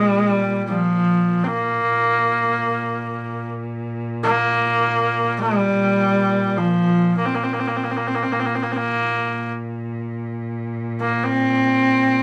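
A bright, husky horsehead fiddle carries the melody up front between F3 and C4, its bowed horsehair strings earthy with light vibrato and portamento, in this 12.2-second passage of Mongolian folk music in free time. Beneath it a single bowed cello holds a smooth, even drone on Bb2, rich with vibrato and set distant in the mix. The two players sound live together in a studio room with a wet ambience, and the mood feels galloping and vast.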